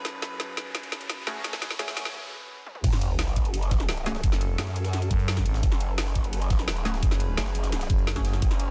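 A metallic, eerie drone of sustained chords with chorus and reverb hangs in the background as an overdriven drum and bass kit with bright hats and a woody snare plays a fill over a rising effect, while muted, mellow dub chord stabs with phaser and tape echo flicker in at 1.3 seconds, setting up a dark, mechanical drum and bass excerpt in F# minor at 172 BPM. After a brief break, the drop lands at 2.8 seconds with an impact and sub drop, a knocking electronic kick, a very quiet, gritty breakbeat kit with a high-tuned snare and ride, and an aggressive, wobbling growl bass, saturated and pumping, placed up front. A thick FM growl bass joins at 4.2 seconds, sitting beneath the drone and stabs in a dense, heavily limited mix.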